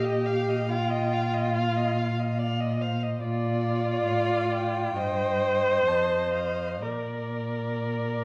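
Rubato 4/4 at 61-73 BPM opens this tender, slow romantic movement for string quartet in Bb major, cut from a longer piece and moving from Ebadd9/Bb through F7 back to Bb by 6.8 seconds. Four bowed strings play con sordino with vibrato throughout: the melody violin sits in the background with a veiled tone and portamento, the second violin holds a distant line, and the viola's soft-attack accompaniment, also sliding with portamento, comes up front beside the dark, smooth-topped cello bass. A moderate recital hall reverb rounds out the hushed sound.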